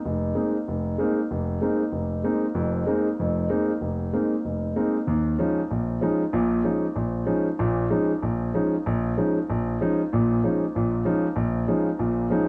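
A warm concert grand piano carries this short jazz excerpt alone, sounding deep in the bass, natural and up front, with a cassette tape coloring to its tone. The tempo is a brisk 191 BPM in 4/4, with the eighth notes swung at 60%, and the mood is hypnotic and searching. The piano stays in its lower and middle register, from F1 up to Eb4, entering at 0.1 seconds and playing through to 12.5 seconds. The harmony rests on a Bb9sus4 chord before moving to Eb9sus4 at 5.1 seconds, giving the passage two suspended, open-ended sections. A moderate spring reverb adds a lingering tail around the piano, and the whole has the intimate, homespun feel of a home recording captured on cassette, cut from a longer piece.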